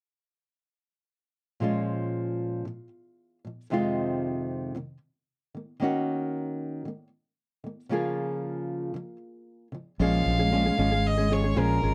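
Recorded close and dry with detailed microphones, this short acoustic pop clip, cut from a longer piece, has an intimate, tender and reflective mood with a gentle swing in its 4/4 groove. A dark, small-sounding nylon-string guitar opens at 1.6 seconds, fingerpicked up front as accompaniment and moving through minor seventh chords before settling on a Db6. At 10.0 seconds the music shifts into a new section as a bowed solo violin takes up the melody, its warm, nasal and earthy tone carrying a light vibrato while sounding slightly distant. At the same moment a mellow fretless electric bass enters underneath, round and direct with an amped, dark character, sitting low and slightly louder than the other parts. The three instruments play together until the clip ends at 11.9 seconds.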